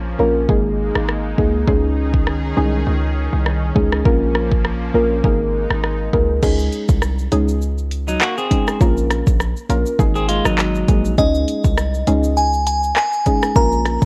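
A lush, detuned sawtooth pad with chorus and sidechain pumping opens this sunny, summery dancehall excerpt alongside a hard-hitting 808-style bass, heavy and punchy with a fast attack. A soft, round pluck with chorus joins at 0.2 seconds, and an electronic afro-pop drum kit arrives at 0.5 seconds with a deep kick, dark hats, handclaps, rim clicks, shaker and crash, riding a 101 BPM groove in Db major with a gentle swing on the 16ths. The pad drops out at 6.4 seconds as the harmony cycles through Dbsus2, Bbm and Absus2, and at 8.1 seconds a clean electric guitar plays arpeggios through spring reverb. From 11.2 seconds a glassy, crystalline FM bell takes a second line high above, colored by chorus and digital delay. The whole mix sits in light reverb with the worn, warbling pitch drift of old cassette tape.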